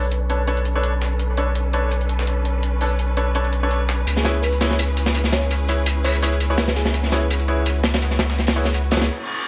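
Swung jungle breakbeats drive this atmospheric, raw drum and bass excerpt: a compressed, tape-toned sampler-style kit with high-passed hats and snare plays from the start, a crunchy, saturated acoustic kit joins up front at 4.1 seconds, and a thick sine sub bass holds the bottom, while dark, woody bowed strings with vibrato sustain lush chords under a filter sweep, a brilliant concert grand piano punches gritty 12-bit stabs through dub echo, a bell-like FM electric piano sparkles in the background with chorus, phaser and echo, and a reverse cymbal sounds over a brief break at 9.2 seconds.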